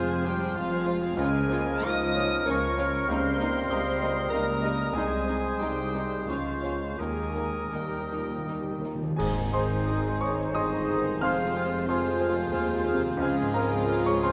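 A present grand piano with long sustain carries the melody up front in this lyrical, lush romantic movement for piano and orchestra, cut from a longer piece, moving in a rubato 3/4 at roughly 81-100 BPM in Ab major. Floating, sul tasto violins share the melody while a hollow flute, a clear, distant oboe, a clarinet and a second, background violin line weave supporting lines around it. Beneath them, woody violas and a mellow bassoon fill the accompaniment, a French horn section holds soft sustained chords, and intimate cellos with pure-toned double basses anchor the bass. Hard-mallet timpani on calf heads enter with a fill at 7.0 seconds, and at 9.2 seconds the full ensemble lands an accent with bright clash cymbals and concert bass drum as the music opens onto a new section. Around that moment mellow trombones add very quiet sustained chords, trumpets give soft stabs and a roomy tuba deepens the bass, all wrapped in the scoring stage's wet reverb.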